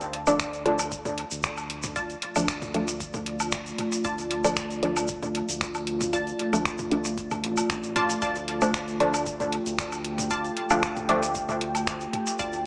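A straight 4/4 pulse drives this hypnotic, cavernous dub techno excerpt, carried by a booming analog drum machine with finger snaps and metallic hats, a grainy, close tube shaker, layered electronic woodblock and toms, and a deep electronic kick sitting in the background, while a round analog bass with ring modulation pumps beneath on a Dm chord. Two filtered dub chord stabs carry the harmony: a mellow, detuned, up-front stab coloured by chorus and cassette tape, and a brighter, resonant, wave-folded riff smeared by phaser and dub echo. From 1.9 s a dark, moody ambient pad with a slow attack and long release fills the space, and the dreamy mix is soaked in plate reverb with a small-speaker character.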